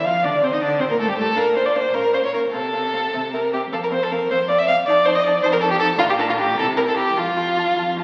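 A spirited, graceful classical-period string quartet movement in 6/8 with a flexible rubato feel, cut from a longer piece, where an up-front, smooth-topped second violin carries the most presence beneath a very quiet, clear and focused first violin melody, while an expressive viola sliding between notes sits in the background and a distant, rich-toned cello with portamento holds the bass, all heard through a wet scoring-stage reverb and the crackle of a very old 78 rpm record that dulls the top end.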